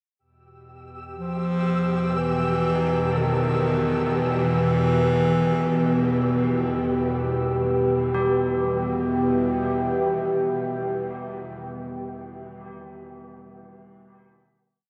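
A dark ambient drone piece in free time, unsettling and desolate, set in a huge wet reverb: a tense, string-like bowed drone holds low from 1.6 seconds while a flickering, grainy texture sustains a high note above it. A clear, close-miked bass clarinet plays a free, classical-style solo melody up front in a narrow low range, as bronze, clangorous old church bells sit in the background in two slow loops of unequal length drifting against each other. From 5.1 seconds a deep, moody pad with chorus brings slowly shifting chords, carrying the piece into a final chord that lingers to the end.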